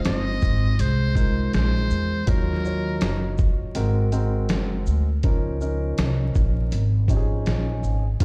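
Jazz-hop with a cool, nocturnal mood, this short cut from a longer piece rides a swung 4/4 groove. A gritty, pitched-down sampler-style drum kit sits up front, its thumpy kick, medium-tuned snare, hi-hat and shaker carrying the compressed weight of a large room. A woody, pizzicato upright bass anchors the low end beside it, while a dark, mellow concert grand piano with deep bass comps through chords moving from Fm7 to Ebm9, Ab9 and Db69. For the first few seconds, a trumpet with a metal mute takes a buzzy, breathy jazz solo with light vibrato and scooped notes, shadowed in the background by a slightly broken-up electric guitar carrying a slapback echo, both falling away at 3.4 seconds. Vinyl crackle and a large studio reverb, as if played on a big sound system in a bare room, wrap the whole track in a dusty, late-night haze.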